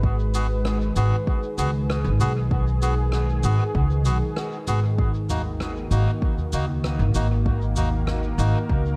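A dark, reverberant studio sound frames this meditative, spacious ambient dub fragment in G# minor at 97 BPM in straight 4/4, tuned to A4 = 445 Hz. A woody pizzicato upright bass and a deep, overdriven electronic kick sit up front, while a detuned sawtooth pad with chorus holds soft-attack chords that move from G#m7 to D#m/G# at 5.0 s. From 0.3 s, a reedy, breathy melodica adds stabs with dub echo, and a soft-mallet kit of rim click, shaker and toms, also echoed, brings a natural hall ambience.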